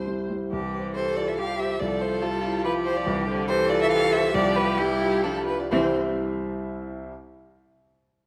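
Spirited and graceful, this brief excerpt from a quick classical-period movement for piano quartet in C major moves in a supple 3/4 with rubato, at roughly 122-145 BPM, and slows from 2.4 to 5.7 seconds. An up-front violin with vibrato and portamento sings the expressive melody over a rich, even cello second line and smooth viola accompaniment, while a dark, mellow grand piano, also close, supports them. The harmony returns to C at 5.7 seconds, and the strings stop at 6.0 seconds, leaving the piano alone until 7.1 seconds, all within a moderate scoring-stage reverb.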